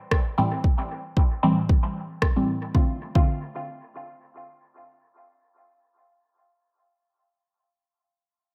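Dub techno at 114 BPM in D minor, hypnotic and cavernous, with a light swing on the sixteenths and a light reverb around it. Up front sits a filtered dub chord stab, muted and detuned with a fast-attack filter pluck, run through phaser, sidechain pumping and dub echo as it moves from Am7 to Dm7 at 2.7 seconds. A deep, tape-warm electronic kick drives the opening alongside an overdriven analog rim click with its own dub echo. The rim click stops at 2.3 seconds and the kick at 3.3 seconds, leaving the stabs alone until they end at 6.7 seconds.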